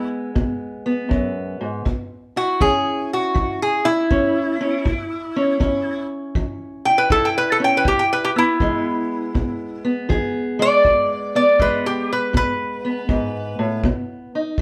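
A swung groove in four carries this gritty, swaggering stretch of acoustic country blues, cut from a longer piece. A lap resonator guitar takes the melody up front, its bright, metallic, nasal voice sliding under a steel bar and struck with fingerpicks, soloing from the start until it falls silent at 13.8 seconds. Beneath it, a fingerpicked steel-string parlour guitar supplies the accompaniment, also up front, with a dark, woody, boxy tone from old strings. A tight, natural kick drum played with brushes enters at 0.4 seconds and holds the pulse. The harmony moves from E to A, returns to E, and lands on B just as the resonator stops, all set in light reverb like a band playing together in one room.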